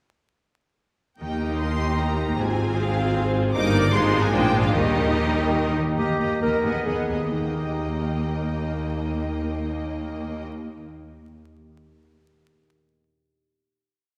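Cheerful and graceful, this short, complete romantic orchestral movement moves at a fast 127 to 156 BPM in 3/4 time in Eb major, with a dramatic character. A bright violin section carries the melody high above a rich second violin section and a clear viola section, which play tremolo and chords in the rhythm of the tune. In the background, the ringing concert harp adds rolled and broken-chord arpeggios. The cello section holds sustained and repeated bass notes, doubled by a smooth double bass section and, until 5.7 s, a dark tuba. The tempo slows from 4.1 s, and a warm solo clarinet comes up front at 6.0 s with a melody through the brief coda, leading to a final Eb chord that sounds at 7.3 s. The orchestra is heard from further back in a reverberant concert hall, with a layer of vinyl crackle.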